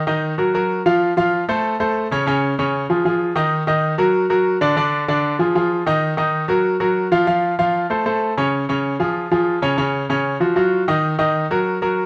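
Fiery and passionate, this short cut from a longer Latin piece features a solo baby grand piano driving forward in a straight 4/4 feel. The piano sounds brilliant and intimate, sitting up front in the mix with its polished tone and a touch of audible action noise that brings the listener close to the instrument. Its part spans from Db3 up to F5, moving through a restless progression that circles back repeatedly to E-flat minor, passing through F, D-flat with an added ninth, a diminished chord on D and a bare G-flat fifth along the way. A moderate studio reverb gives the playing a sense of space, while the overall production leans dark and warm. The whole passage runs as a single section of just over 12 seconds.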